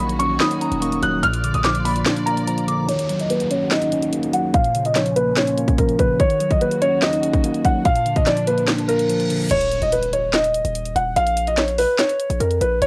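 Trap-style hip hop in Eb minor at 145 BPM with a half-time feel, this menacing, hard-hitting excerpt puts a soft, felt-muted upright piano melody up front over a mellow tine electric piano and dark, woody bowed strings in the background, all low-pass filtered and coloured by cassette tape, while a gentle FM synth bell with chorus and tape echo sounds only through the first 2.9 seconds. An overdriven trap kit with a hard-clipped kick, sharp snare, bright hats, claps and crash hits hard, and a heavy, aggressive distorted 808 bass appears briefly at the start and returns at 9.5 seconds, where an impact lands and the electric piano and strings drop away. A filter sweep runs through the middle stretch, where an electronic downlifter also plays, a reverse cymbal leads into the final part, and the whole mix has the light reverb and grain of a home cassette recording.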